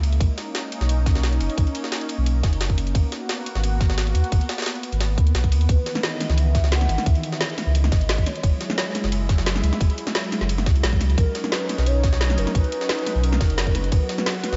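This is a piece of liquid drum and bass with a rolling, soulful mood, taken from a longer track. A lush, warbling pad of detuned sawtooth voices with chorus holds sustained chords throughout, over a round, deep sine sub bass that sits up front. The rhythm layers a tight electronic kick, up front from 0.2 seconds, with a produced kit of woody snare and metallic hats and a gritty, pitched-up sampler-style break whose high-tuned snare and ride are filtered and tape-coloured. At 5.7 seconds a hollow, clarinet-like square-and-triangle lead enters with a soft attack, vibrato, analog chorus and delay, carrying a mellow melody. The chords move through rich ninths and a suspended seventh, starting on Bmaj9, and the mix has a light reverb and a soft, rounded top end.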